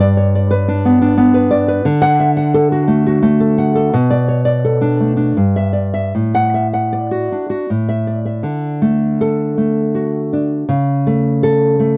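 A tender, nostalgic fragment of a romantic piece for solo nylon-string guitar in D major, its thumb-plucked classical tone sitting up front and warm in a dry, close 1970s-style studio sound, moving with rubato in 3/4 at around 75-90 BPM across a range from G2 to F#5, as its harmony drifts from G through Bm7 and Em7/G to a new passage that begins at 8.4 seconds on D and settles onto A/C# near 10.7 seconds.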